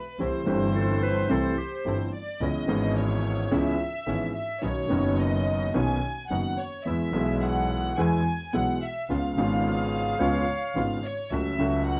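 Sultry and melancholic, this rubato tango in 4/4 at 108 BPM is cut from a longer piece and opens with a soft-attacked, sul tasto violin section bowing a pure, floating second line from 0.0 seconds, joined at once by up-front vintage grand piano accompaniment, a focused bowed double bass with vibrato set at a distance, and dark, reedy bandoneon stabs tucked in the background. A distant, roomy solo clarinet in classical style adds a warm second line in two brief spots, at 0.8 and again at 9.7 seconds, over chords moving from C6 through C#m7, Badd9, E and C#7 to F#m/C#. Close, detailed microphones and light reverb frame the music, with vinyl crackle underneath.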